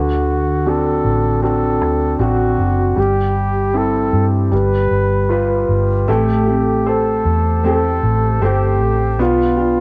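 With the soft grain of a home cassette recording and light reverb, this hopeful, emotional pop passage, cut from a longer piece, features a close-miked, up-front flugelhorn singing the melody with light vibrato and scooped notes. A vintage grand piano with long sustain and deep lows supports it, while a foam-muted electric bass adds round, punchy weight underneath. At 6.1 s a dark, full-bodied nylon-string guitar enters with thumb-plucked arpeggios over chords that move from D7 toward Am7.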